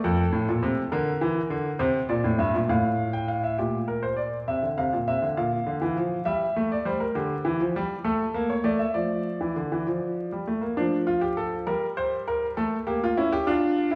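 A clear, intimate grand piano carries this stately yet lively baroque-style two-part invention alone, sitting up front with audible action noise and a long sustain. In a straight 6/8 at 67 BPM counted in dotted quarters, it moves through harmony centred on F before settling into D minor from 7.2 s, and its opening idea returns at 10.8 s. A wet recital-hall reverb and vinyl crackle surround this short excerpt.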